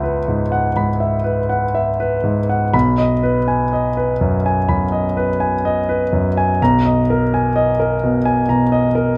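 A clear grand piano plays alone throughout this brief impressionist classical excerpt, its intimate, up-front tone captured by close, detailed microphones that let the audible action noise of the instrument come through naturally. The mood is serene and dreamy, moving in 4/4 at a slow 59-65 BPM with a rubato feel that lets the time breathe. Set in B major and tuned to A4 = 441 Hz, the piano spans from B1 up to B5. The harmony opens on C#m7, settles onto B6 at 2.7 seconds, and arrives at Bmaj7 at 6.6 seconds, giving the passage a gentle, floating sense of resolution. Light reverb adds a touch of space around the otherwise close, natural sound of this short fragment cut from a longer piece.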